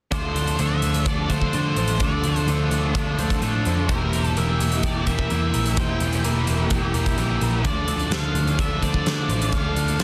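A dense, heavily limited modern master in a small room carries this melancholic, dreamy shoegaze and dream pop rock passage, cut from a longer piece, where a warm octave-fuzz lead guitar sings the melody through distortion and digital delay over twangy, compressed clean electric guitar arpeggios tucked in the background with analog chorus and delay, two biting overdriven guitars (one bright with analog chorus, one dark with reverse reverb) playing the riff, a round, foam-muted vintage electric bass, and a huge arena drum kit with a fat snare and punchy kick, as the chords move from Dm7 to Edim and back.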